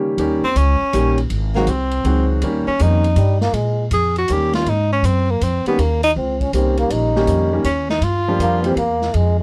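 Piano and pizzicato upright bass open this playful jazz excerpt together, a small-group swing and bop passage in a lilting three-beat metre with a swung eighth-note feel. The clear concert grand comps with a deep low end, while the woody, thumpy bass sits up front on steel strings. A distant, roomy drum kit joins softly in the background, its dark cymbals, medium-tuned snare and boomy kick set back in a small room. At 0.4 seconds a present tenor saxophone takes the melody with light vibrato. A trombone with a cup mute adds a soft, veiled, breathy second line, appearing briefly and returning at 6.2 seconds to carry on to the end. The dry sound keeps every voice close and intimate, giving the whole a warm, playful charm.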